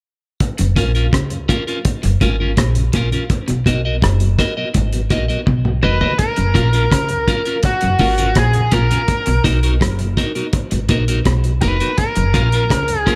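A biting, overdriven lead guitar steps up front at 5.8 seconds, carrying a bright picked melody over this sunny, uplifting roots reggae excerpt at 83 BPM in F# major. Beneath it, a cloth-damped drum kit sounds thuddy and muffled, with a tight kick, rim clicks, hi-hat and toms, gritty and saturated with a rolled-off top, and a drum fill leads into the second section at 6.2 seconds. A woody, thumpy pizzicato upright bass anchors the low end. One slightly broken-up electric guitar plays a low picked riff through lush chorus, while a second, compressed and set in the background, adds accompaniment with warbly pitch drift and tape echo. A mellow, round tonewheel organ with key click sits behind them, turning through a slow rotary speaker and tape echo as the chords alternate between F#maj7 and Bmaj7 in light reverb.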